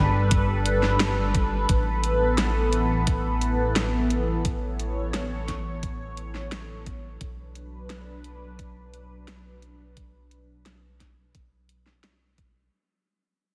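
A straight 4/4 pulse at 87 BPM drives this nostalgic, uplifting synthwave fragment, cut from a longer piece, with a thumpy, overdriven electronic kick and a layered pop kit of hi-hat and a fat snare entering at 0.3 s. A glossy chorused synth bass holds the low end in a narrow span from G1 to B1, its pulse-wave and sawtooth tones plucked by a filter into a mellow, up-front sound. Above it, a swirling, detuned analog pad sustains chords through phaser and chorus, pumping under sidechain compression while a filter sweep moves across it. The harmony moves from Gadd9 to Asus2 and settles on Bm7 at 7.2 s. The whole mix is dreamy and soaked in a cathedral-sized reverb, and it fades out across its 12.7 seconds.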